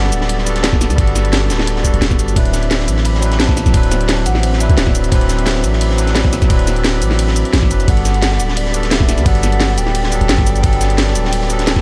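Layered drum kits drive a straight 4/4 at 174 BPM, with a compressed, thumpy electronic kick joining at 0.7 seconds. Above it sit a produced drum and bass kit with cracking snare, bright hats, cabasa and ride, and a darker, saturated breakbeat kit with a high-tuned snare tucked in the background. This uplifting, lush liquid drum and bass fragment in G major moves from Gmaj9 to D13 and back, anchored by a deep, sine-toned 808-style bass that sits up front with tube saturation. A barky, overdriven tine electric piano plays accompaniment through a combo amp, while a thick, detuned unison pad with chorus holds sustained chords in the background. A hollow, woody clarinet-like synth lead with vibrato, cassette tape colour and digital delay carries the melody, pausing at 5.1 seconds and returning at 7.9 seconds, all in a dry sound.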